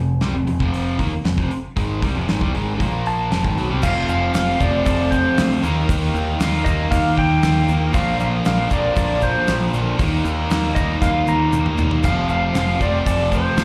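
Classic rock with a driving, sunny mood, this excerpt from a longer live club performance moves at 117 BPM in a straight 4/4 in F mixolydian, heard through the venue's PA with light club reverb. From the start a cranked stack guitar up front and an overdriven electric guitar further back play riffs, anchored by a growling, overdriven picked electric bass, while a damped 70s drum kit with a fat snare, tight kick and dark cymbals comes in at 0.2 seconds. A clean lap steel guitar enters at 3.1 seconds with a dark, compressed slide melody marked by volume swells, its tone touched by slapback echo like the two opening guitars. At 3.8 seconds the second section begins as the harmony moves through Fadd9, Ebadd9 and Bbadd9, a very quiet, shouting tonewheel organ adds sustained chords with key click and slow rotary speaker, a biting, double-tracked overdriven guitar joins the riffing at a low level, and a grainy tube shaker sits in the background. 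A drum fill arrives just before the return to Fadd9 near the end.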